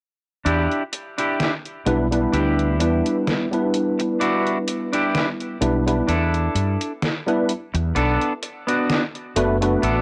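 In this melancholic, woozy vaporwave fragment cut from a longer piece, a bright, picked clean electric guitar riff coloured by analog chorus, a low-pass filter, cassette tape and tape echo opens at 0.5 s alongside a dark, round fretless bass up front and a detuned 8-bit drum machine of hi-hat and medium-tuned snare with tape-warm small-room ambience, lightly swung on the 16ths, before a barky tine electric piano through a combo amp, thickened by ensemble chorus, 12-bit sampler grit, cassette tape and tape echo, joins at 1.9 s over Em7, which shifts to Bm7 at 8.0 s, the homemade cassette recording sitting in a light reverb.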